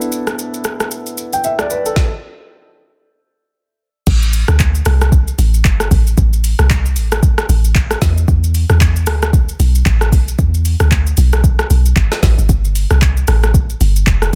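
A deep, round log drum bass with a percussive noise layer and fast, decaying attack lands up front at 4.1 seconds, driving the drop of this hypnotic, late-night amapiano excerpt with a 16th-note swing feel. Before it, a mellow, worn grand piano with audible action noise plays intimate chords until 2.1 seconds, leading into a stop. Throughout, an electronic R&B drum kit, re-recorded in a small room, sets a soft kick, woody snare and metallic hi-hats beside handclaps, rim clicks, shaker and crash cymbal within dense digital ambience and a heavily limited modern master.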